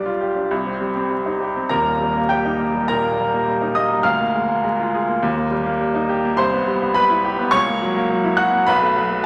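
Vinyl crackle sits under a lush concert-hall reverb with a long tail, framing a close, intimate baby grand piano whose mechanical action noise can be heard beneath its ringing sustain. This passionate, stormy classical study is a virtuoso piano showcase in 4/4, played with free rubato across a span reaching from Eb1 up to F#6. The solo piano is present from 0.0 to 9.3 seconds in this short passage lifted from a longer piece, with shifting seventh chords giving it restless harmonic color.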